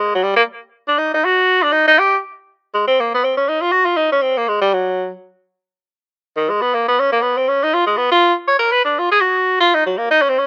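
Swinging and warm, this brief jazz excerpt at 240 BPM in 4/4 features a lone tenor saxophone with a clear, vintage tone and vibrato, soloing up front from 0.0 to 10.5 seconds across a range of Eb3 to Db5, recorded outdoors with little reverb.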